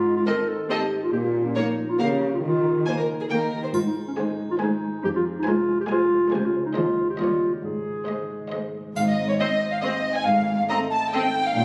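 The recording has the roomy bloom of a scoring stage, caught through a phone in the room and compressed, with a moderate tail that softens the edges. This cinematic, playful film cue in Ab major moves in a straight 3/4 at 138 BPM, sounding whimsical and a little magical, and it is cut from a longer piece. A mellow solo clarinet sits up front with a smooth top, carrying a second line until 8.7 seconds. Beneath it, a thumb-plucked concert harp rings out arpeggios, a warm cello section with portamento holds the bass, and from 0.3 seconds a focused violin section sings the high melody. A woody, darker violin section adds another second line, while a distant, even viola section fills the accompaniment and a close, dry triangle glints twice. At 9.0 seconds an airy, hollow small flute group, a background French horn section on sustained chords and a shadowy double bass section join in, as the harmony turns from plain diatonic chords to a spicier F7#9 over G# near the close.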